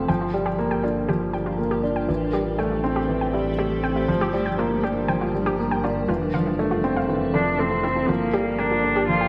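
A lush hall reverb and a small-room intimacy frame this short cut from a longer piano and strings electronica piece, hypnotic and close at 120 BPM in a straight 4/4, set in G dorian. Up front, a dark, woody upright piano carries the riff with audible action noise and a vintage tape echo, while a cloudy granular pad holds sustained chords beneath it. A round analog bass with tube saturation sits deep and nasal at the bottom, and a warbly, lo-fi pluck runs arpeggios through chorus and tape echo. The harmony moves from Gm7 through Am7, back to Gm7, then Fmaj7. A rich, bowed cello with vibrato enters at 7.3 s with a focused melody, and from 8.1 s a build-up begins as filter sweeps move across both the pad and the cello.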